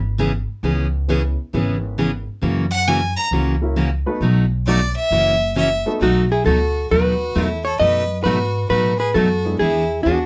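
A close, moderately ambient studio sound frames this playful, swinging western swing fragment, cut from a longer country piece in B mixolydian at 134 BPM with a firm swing on the eighth notes. The upright bass thumps out a woody, gut-string pizzicato foundation throughout, while a bright, full-bodied jumbo acoustic guitar, picked with fresh strings and an audible finger squeak, sits up front in the accompaniment. A mellow, dark upright piano with short sustain adds quiet support through the opening section and returns only briefly near 9.4 seconds. The fiddle, clear and earthy with light vibrato and an airy bow, takes a solo in the first section, entering at 2.7 seconds, then continues as a second line. At 6.0 seconds a clean, hollow-body electric jazz guitar steps forward with the melody over changes moving from B7 toward E7.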